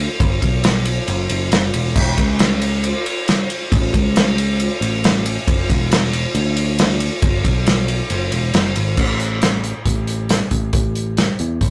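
A growly, punchy picked electric bass in its low register opens this nostalgic, hopeful folk and heartland rock excerpt in A major at 137 BPM in a straight 4/4, joined from 0.2 s by a loose, up-front acoustic drum kit with a tight kick, medium-tuned snare, hi-hat, ride and crash, all captured as a rough rehearsal-room recording with tube saturation and a moderate small-room reverb, with the music shifting into a new section at 9.0 s.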